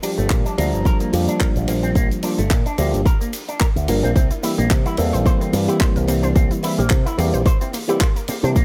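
Nu-disco with a sunny, feel-good mood, this short excerpt moves at 109 BPM in 4/4 with a light 16th-note swing, set in C mixolydian over a Bb6 chord that shifts to C7 at 4.2 seconds. A gritty, overdriven tine electric piano carries the accompaniment through a combo amp, colored by phaser, delay and sidechain pumping. Alongside it, a bright, twangy electric guitar with an envelope filter plays a clean, compressed riff touched with subtle chorus, while a tight funk drum kit with a natural small-room sound supplies handclaps, hi-hat, ride cymbal and shaker. A punchy picked electric bass with an envelope filter sits up front, joined by a layered, punchy electronic kick drum that also sits up front. At 4.2 seconds a round, detuned sawtooth analog pluck enters in the background with arpeggios, its fast-attack, decaying notes treated with chorus, delay and sidechain pumping. A studio reverb ties the parts together.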